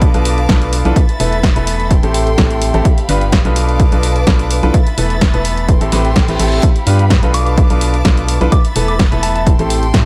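A bright, woody upright piano riff opens this bittersweet, soulful piano house excerpt over a punchy, up-front electronic kick, punchy analog drum-machine hi-hat and snare, a hollow, organ-like FM bass with tube saturation, and a close, expressive violin section holding sustained chords with vibrato, the piano, bass and strings all pumping with sidechain, while a reverse cymbal rises in the background at 6.1 seconds and a soft, pure synth bell melody with chorus, phaser and delay drifts in from 7.3 seconds over a looping Bm7b5, Esus4, Am7, G7 progression.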